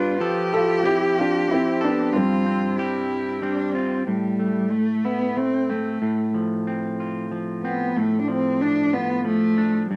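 A bowed, woody cello with light vibrato carries a second line through this nostalgic, intimate acoustic folk-pop ballad in 3/4, then takes a solo from 4.1 seconds. At the start, a felt-muted upright piano sings the melody in a soft, mellow voice with audible action noise until 3.4 seconds, while a twangy, slightly broken-up electric guitar accompanies throughout with fingered chords moving from Fmaj7 and G7sus4 to Am7, F/A and Dm/A. The sound is dry and close, a 1970s-style studio recording with moderate booth ambience, and it is cut from a longer piece.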